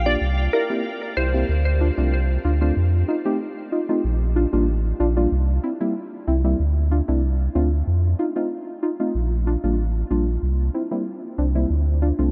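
Soaked in a huge, dreamy reverb, this bouncy, sultry dancehall fragment in D minor at 94 BPM rides a round, up-front sub bass and dark, nasal chord stabs with a filter pluck and chorus, while a glassy, crystalline wavetable pluck with chorus and delay sounds only from 0.1 to 1.3 s over a repeating cycle of C7, Dm7, F7 and Bb6 chords.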